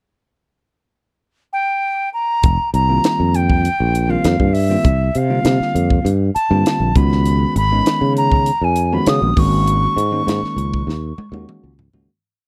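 A dry, close studio sound in a 1970s style frames this short, slick and nocturnal electric jazz fusion piece in F minor, moving at 99 BPM in a straight 4/4. A silver concert flute opens alone at 1.5 seconds over a pickup bar, carrying an airy, straight-toned melody with a crisp attack, built from motifs in period phrases. At 2.4 seconds the fretless electric bass and the drum kit arrive together. The sustaining bass plays a growly, syncopated riff up front, while the polished acoustic kit sets a funk groove with a high-tuned snare, tight kick, hi-hat and toms. A bell-like tine electric piano adds bright, clean syncopated chord stabs in drop-2 voicings through F9sus4, C9sus4, Db9sus4 and Ab9sus4. The piece fades out over its closing seconds, with the drums playing a fill from 10.9 seconds.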